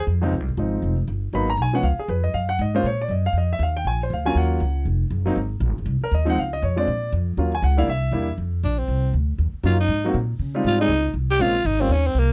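A dry, close 1970s-style studio sound frames this swinging, playful jazz excerpt in Db major at a brisk 238 BPM, where an intimate concert grand piano with audible action noise comps through rootless and extended chords over a woody, thumpy upright bass until a raspy, growling tenor saxophone enters at 8.6 seconds for a short solo.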